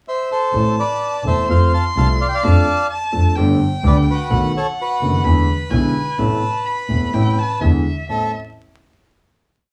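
Heard from further back in a wet studio room with a layer of vinyl crackle, this brief, complete, melancholic and passionate tango in A minor at 127 BPM, tuned to A4 = 436 Hz, moves with a rubato feel as a reedy, close-miked bandoneon leads from 0.1 seconds with motif-based period phrases partly doubled in thirds, joined at 0.5 seconds by a warm violin singing an expressive counter-melody with vibrato and portamento, a clear grand piano with audible action noise and long sustain, and a dark, bowed double bass played sul tasto with light vibrato, the piano and bass both carrying a milonga rhythm, before the piece comes to rest on a final chord at 8.1 seconds.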